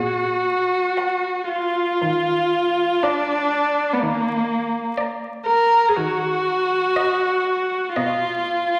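Yearning and elegiac, this slow romantic movement for string quartet in Eb minor moves at 56-62 BPM in 4/4 with a rubato feel, and is cut from a longer piece. A smooth, even viola carries the accompaniment up front from the start over a focused cello bass. At 1.0 s two violins enter, a warm second line with expressive vibrato and portamento beneath a rich, distant, very quiet melody, all set in the wet reverb of a scoring stage with a layer of vinyl crackle.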